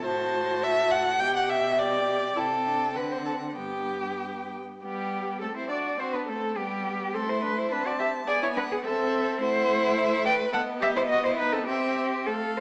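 Heard through a small-speaker sound in a moderate scoring-stage reverb, this short cut from a longer piece is a quick classical-period movement for string quartet in G major, set in 2/4 at 104 BPM with a restless, dramatic rubato feel. All four players bow throughout the 12.6 seconds with vibrato. The first violin carries the expressive melody, rising as high as C6, its rich tone shaded with portamento. The second violin sits close and up front with a warm second line, while the viola's soft-attacked accompaniment also glides expressively between notes. The cello anchors the bass from G2 with a focused, smooth-topped sound placed up front. The opening phrase begins again at 4.8 seconds, its harmony darkening through diminished and minor colours before reaching B7 and settling on C.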